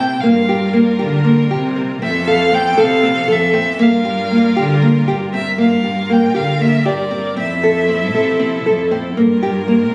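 Fingerpicked nylon-string guitar arpeggios sit small and up front in this restless, hypnotic excerpt of contemporary chamber music in 7/8, alongside a rich, smooth bowed violin melody with vibrato that stops at 8.9 s, a dark, woody cello bass played close, and a bright, intense symphonic string section holding distant chords that move between Gm7 and Fmaj7, captured on a phone in a recital hall with added club reverb and compression.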